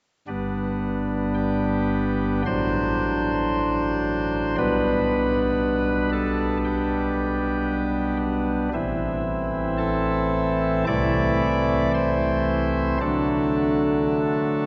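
A classical, chorale-style excerpt for solo pipe organ in G major, majestic and serene, moving at a slow, rubato 56 BPM in 4/4. The nasal cornet stop, with its baroque voicing and audible chiff, sits up front and spans from G1 to D5, playing from 0.3 to 14.7 seconds through a progression that starts on G and arrives on D. A long cathedral reverb of about 5.0 seconds surrounds it, and the sound is darkened, with nothing above 7.8 kHz.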